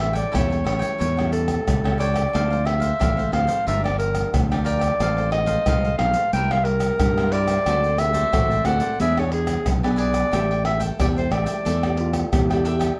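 A small, moderately reverberant room frames this festive, sunny samba and choro excerpt at 90 BPM, where a smooth-topped classical clarinet carries the melody up front over fingerpicked nylon-string guitar set back in the mix, crisp picked cavaquinho, a round, dark fingered electric bass, and pandeiro, tamborim, egg shaker and deep surdo struck with hard hands, moving through chords from A7 to Dm9, Gm7, C7, D7 and E7 before resting on A7sus4, as a jazz-style trombone with vibrato and scooped notes slips in as a second line at 12.0 seconds.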